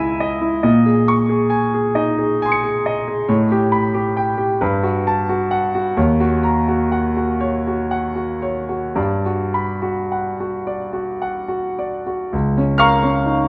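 Impressionist classical solo piano in a serene, hazy mood, cut from a longer piece, where a clear concert grand with deep bass and an open, up-front presence moves in a rubato 6/8 through lush extended chords such as C#m9, A9 and Gmaj9 across a span from C#2 to D#7, settling on Db6 at 12.3 seconds inside a moderate scoring-stage reverb.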